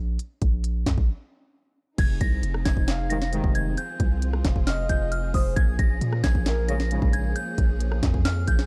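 A deep, sine-toned 808-style bass opens this eerie, menacing half-time trap excerpt at 134 BPM in F minor, joined almost at once by an up-front electronic drum kit with a hard-clipped kick, sharp snare, crisp hats, claps and rim clicks. At 2.0 seconds a tinkling FM bell melody with chorus and delay appears over lush bowed strings on Fm7 and Bbm7 chords, and shortly after a breathy, flute-like synth lead with vibrato adds a second line. Brief, mellow brass stabs punctuate the passage in a dark, digitally ambient production.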